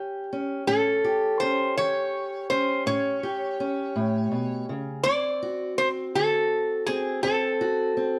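Acoustic country blues in 12/8, this short 8.2-second cut from a longer piece has a swaggering, rollicking mood at a slow 55 beats per minute, counted in dotted quarters with a straight feel. A metal-body resonator guitar, played with fingerpicks and a slide, carries the melody, its bright, metallic and nasal tone sitting up front in a range from G#4 to D5. Beneath it, a fingerpicked parlour-style steel-string acoustic guitar supplies the accompaniment, woody and boxy with the dark sound of old strings, and it is also placed up front. Both guitars play together from start to finish over an A7 chord that moves to D7 at 5.0 seconds. A moderate studio reverb gives the duo a sense of room around them.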